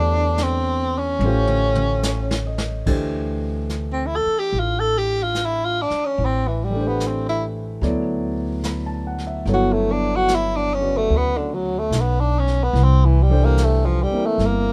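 Close and dry, with little reverb, this short excerpt of a jazz ballad has an intimate, wistful mood at a slow 73 BPM in 4/4, with a gentle swing on the eighth notes. A breathy tenor saxophone carries the melody up front, its clear subtone coloured by vibrato and scooped notes, and from 2.9 seconds it takes a solo that runs to the end. Beneath it, a concert grand piano with a deep, natural bass supplies the accompaniment, moving through harmonies such as C69/E, A7alt, Am7, D69, Gmaj9#11 and C13. A pizzicato upright bass sits equally forward, woody and growly with steel strings. A vintage brush drum kit enters at 0.4 seconds, quieter in the mix, with dark cymbals, a medium-tuned snare, a punchy kick and a rolled-off top, and plays a fill from 1.2 to 2.9 seconds that leads into the saxophone solo.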